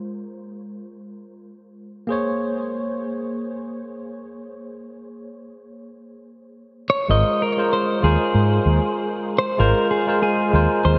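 Sunset chillout excerpt at 96 BPM in Ab major, warm and sunny with a light 16th-note swing, opening on a clean tine electric piano heard through its built-in speakers, its Ab69 and Bbm9 chords trailing into a diffuse ambient delay. At 6.9 seconds a compressed, clean electric guitar takes the melody with vintage 12-bit sampler grit and tape echo, and at 7.1 seconds a dark, round fretless electric bass arrives up front as the harmony returns to Ab69. The dreamy mix is soaked in a huge ambient reverb, with a soft, rolled-off top end.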